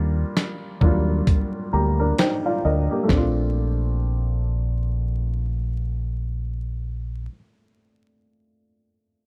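Lo-fi hip hop at a slow 66 BPM in Bb major, this cosy, nostalgic excerpt swings gently over vinyl crackle, moving from Ebmaj7 to Bbmaj7. A felt-muted upright piano, soft and intimate with audible action noise, carries the accompaniment through cassette tape colour and a low-pass filter sweep, adding a fill from 1.3 s. A dark, round fingered electric bass sits up front until 7.3 s, and a gritty, compressed sampler-style drum kit with a thumpy kick and fat snare plays until 3.3 s in a dry, close sound.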